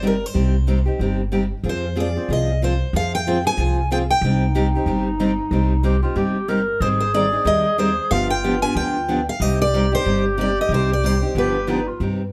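Acoustic string swing in the jazz manouche tradition, this bittersweet, virtuosic excerpt moves at a brisk 185 BPM in C minor with a swung eighth-note feel. A bright, picked steel-string acoustic guitar carries the melody up front, while a second picked steel-string guitar, fresh-stringed and equally forward, supplies the accompaniment beneath it. An upright bass with gut strings anchors the low end in pizzicato, its tone woody, dark and thumpy. At 4.2 seconds a breathy clarinet joins with a second line, its soft attack, light vibrato and scooped notes giving it a whispered, intimate, vintage character. The harmony cycles through Cm, Fm, Abmaj7 and G7, and the close, detailed recording sits in light reverb, cut from a longer piece.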